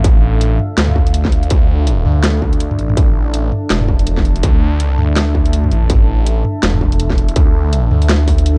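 Half-time drum and bass at 164 BPM in D minor, this short excerpt from a longer piece feels spacious and heavy, with a swung sixteenth-note groove resting on a single D minor chord throughout its 8.6 seconds. A distorted electronic kick sits up front, joined by a layered, overdriven kit of cracking snare, bright hi-hats and toms, both touched by a small room reverb. Underneath, a thick, swirling sawtooth bass built from detuned unison voices with a sine layer holds long notes from E1 to D2, its fast attack and tube saturation giving it grit while a phaser colours its tone. Behind them, a deep, moody pad sustains chords between D4 and A5 with a slow attack, long release, sub octave, chorus and its own reverb, all shaped by sidechain pumping. The overall production is dark and low in the top end, with little reverb beyond what the individual parts carry, keeping the drums and bass close and heavy.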